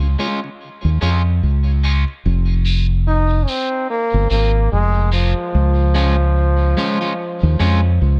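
Deep and hypnotic, this reggae passage in F minor at 73 BPM, cut from a longer piece, rests on a dark, round fingered electric bass held up front throughout, while a piping tonewheel organ with key click and light overdrive sits in the background for its first 2.1 seconds, a slightly broken-up, picked electric guitar adds tape-echoed accompaniment, and a bright, roomy trombone enters at 3.1 seconds to carry the solo melody amid a filter sweep and chords moving from Db to F minor, with little reverb on the mix.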